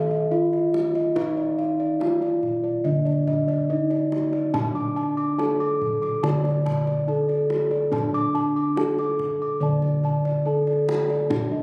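A shimmering, stately Javanese gamelan passage at 71 BPM features a mellow bronze metallophone carrying the melody up front through a tape echo, together with bright, round bossed gongs spinning high arpeggios and softer padded bossed gongs beating out the bass, all sounding from the start, while a deep, distant kendang played with soft hands enters at 0.1 seconds. Everything is heard in a moderate recital hall reverb captured on a phone in the room, in this brief cut from a longer piece.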